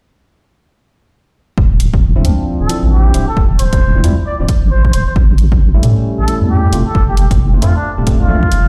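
Moody and skippy, this swung two-step UK garage cut opens at 1.6 seconds with a deep, dark wobbling bass sitting up front beside a punchy, tape-warm analog kick, with a much quieter hi-hat slipping in just after. Clean, mellow tine electric piano stabs through a combo amp, touched with subtle chorus and delay, join over a Dm9 chord that moves to A7 and then F6, while a cup-muted trumpet enters at 2.6 seconds with a soft, veiled, distant classical-style solo trailed by delay. The whole mix carries the ring of a big sound system in a bare room.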